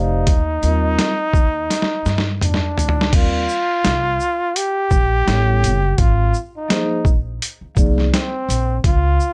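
A punchy, up-front trombone carries the jazz-style solo melody with vibrato and scooped notes over mellow, soft-mallet vibraphone, woody pizzicato upright bass and a gritty, overdriven boom bap drum kit with a thumpy kick and high-tuned snare, giving this excerpt of relaxed, smooth jazz-hop a swung feel, a drum fill from 1.7 to 3.1 seconds and light reverb.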